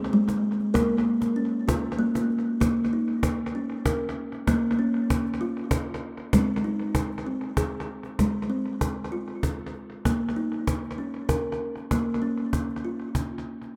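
Soaked in tape echo and a moderate spring reverb, the recording has an echo-heavy glow, with both parts placed up front. This is a hypnotic, meditative world piece for tuned percussion in a gently turning three-beat metre with a straight feel, cut from a longer performance. A kalimba carries the music in arpeggios, its fingertip plucks sounding woody, hollow, mellow and airy, each note short and soft as it rings through the echo. A snappy acoustic cajon with snares joins at 0.1 seconds, its live-room sound also trailing off into tape echo beneath the kalimba. The harmony rocks slowly between A-flat and B-flat minor, and after a brief opening the piece settles into a longer passage from 2.6 seconds that carries the same drifting calm through to the cut.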